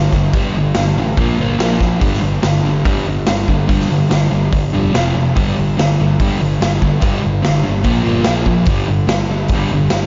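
A double-tracked fuzz guitar riff in G minor opens this swaggering, raw garage rock excerpt at 144 BPM over a dark, round overdriven bass, joined at 0.1 seconds by an up-front, gritty drum kit with a punchy kick and medium-tuned snare pumping in a bright stone room, as the riff cycles through G5, Bb5 and F5 power chords under light reverb and a rolled-off top.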